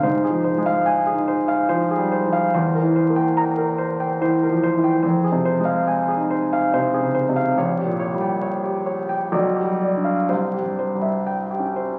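Yearning and wistful, this romantic classical nocturne for solo piano unfolds in a rubato 3/4 at roughly 60-73 BPM in F minor, tuned slightly low to A4 = 435 Hz. The grand piano sounds warm, polished and up front, ranging from deep bass to the upper treble as the harmony moves from F minor through C7 and a diminished chord before coming to rest on C major near 10.3 seconds. The excerpt has the feel of a very old 78 rpm record, with vinyl crackle and a wet recital-hall reverb around the playing.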